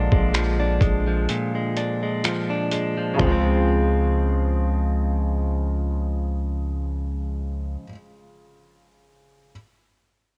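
A long, deep 808-style bass with a sine-like tone and fast attack sits up front, decaying under a clean, direct-recorded electric guitar that picks compressed arpeggios through cassette tape and tape echo until 8.0 s. This dreamy, romantic contemporary R&B excerpt moves at 63 BPM in Db major with a lightly swung 16th feel, as a felt-muted upright piano adds soft, mellow accompaniment with audible action noise, and chords shift from Bb7 to Dbmaj7 at 3.2 s. A gritty, sampler-style drum kit of finger snaps, hi-hat, toms and a thumpy kick plays only until 3.4 s, all of it set in a light digital ambience with the intimate feel of a home cassette recording.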